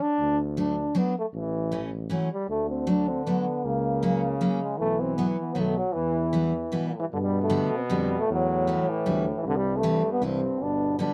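Alpine folk for dance band in a festive, bouncy 3/4 at 156 BPM, moving from E minor to G major at 7.1 s. A clear euphonium with light vibrato and a soft attack carries the melody up front from the start, while a mellow, distant tuba holds the bass and a full-bodied picked steel-string acoustic guitar with fresh strings sits close in the mix. A warm second euphonium enters at 2.5 s with a roomy second line, all set in a dark production with light reverb, cut from a longer piece.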